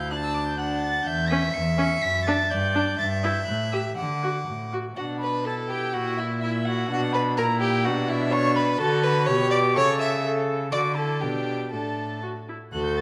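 Cheerful and lively, this quick classical-period string quartet movement in 2/4 at 124 BPM moves from D major into B minor at 5.0 seconds and returns to D major at 8.8 seconds. A dark, nasal first violin carries the melody high above a rich second violin line, while a distant viola with light vibrato fills in the accompaniment and a close, up-front cello anchors the bass. All four players use gut strings in period style, giving a reedy edge that blooms in the wet reverb of a scoring stage, in a short section cut from a longer piece.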